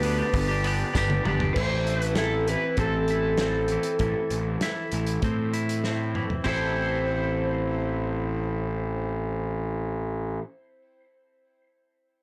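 This indie rock excerpt moves at 98 BPM in a straight 4/4 in A minor, with a cool, bittersweet mood and a blown-out, overdriven sound that has little reverb. A raw garage guitar carries the melody in a lo-fi, overdriven voice, with harmonic tremolo and digital delay. Two bright, twangy twelve-string electric guitars play clean, compressed riffs. One of them sits further back, bathed in lush chorus and delay. Up front, a growly fuzz bass with transformer saturation anchors the low end, while a loose small-room drum kit with a clipped snare plays drum fills and drops out at 6.6 seconds. The harmony shifts from G to A minor at 1.6 seconds, just after a brief, jingly tambourine touch in the background at 1.0 seconds.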